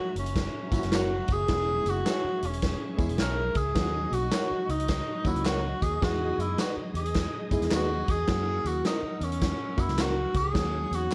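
A warm, roomy tenor saxophone carries the melody up front in this joyful, danceable slice of uptempo 1960s-style soul, swinging at 106 BPM over chords moving from F#7 through E6, D#m7 and Emaj7, with a very quiet, ringing vibraphone adding a second line from the start. A punchy, natural big-room drum kit and a dark, round, foam-muted fingered bass join at 0.2 seconds, followed by background tambourine, egg shaker and group handclaps. A barky, lightly overdriven reed electric piano, slightly broken-up lo-fi guitar stabs with slapback echo, and sustained chords from a clean tonewheel organ through a slow rotary speaker fill out the mix under light reverb.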